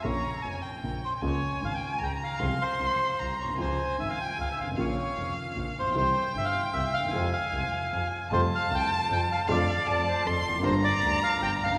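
A long, wet church reverb surrounds this dramatic, sultry tango fragment, cut from a longer piece and set in 3/4 at 153 BPM with a free, rubato feel. Up front, a reedy, vintage-toned bandoneon carries the melody in a dark, band-limited voice, while a bowed violin adds a second line, its warm vibrato, portamento and smooth top adding expressive sweetness. Beneath them, an upright piano gives mellow, woody accompaniment with audible action noise and a slightly detuned, intimate character, and a clear, focused double bass, bowed with vibrato, anchors the low end. The harmony moves through F harmonic minor before brightening into F major at 8.3 s. A concert flute drifts in from the background at 9.9 s for a brief, airy, tongued phrase with its own vibrato.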